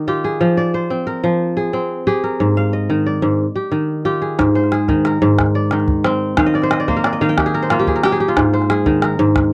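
A ringing, crisp kora opens this excerpt of West African traditional string music, its fingerpicked arpeggios spanning Ab2 to G5 up front over a flowing, hypnotic 12/8 at 121 BPM, tuned slightly below standard pitch and moving through Fm, Ab5 and Eb. At 4.4 s a small, band-limited calabash joins quietly beneath it as the harmony settles between Ab and Eb, and the kora plays a fill from 6.4 to 8.4 s. The sound is dry and close, like a 1970s studio, with a light touch of reverb.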